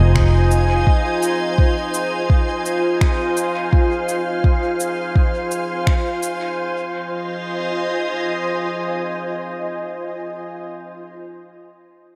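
This ambient dub excerpt opens with a soft, organ-like pad sustaining chords up front, its pure, detuned tone thickened by ensemble chorus, while a dark, round fingered electric bass sounds a single low note and stops at 0.8 seconds. In the background, a bubbling sawtooth texture shifts through resonant random filter steps, treated with chorus and its own reverb. Almost at once an electronic kick enters, soft yet overdriven and up front, alongside overdriven electronic finger snaps and cabasa trailed by dub echo, all sitting in a lightly swung 4/4 feel. The beat and the bubbling texture fall away by 6.6 seconds, leaving the evolving, bright pad to carry the second section alone until 10.2 seconds. A lush hall reverb drenches the mix, giving the piece a spacious, meditative, dreamy air.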